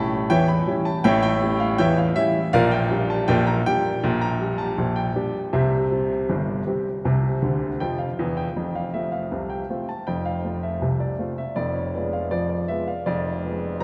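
Straight 2/4 at 80 BPM sets a jaunty, cheerful ragtime feel in F major as a solo grand piano, warm and up front, ranges from F1 to C#6 through A7, Gm/Bb and C before a fill from 7.4 to 8.6 s leads into a new section at 8.6 s moving from F to Fdim7, all bathed in a wet cathedral reverb with a long 4.8 s decay in this short cut from a longer piece.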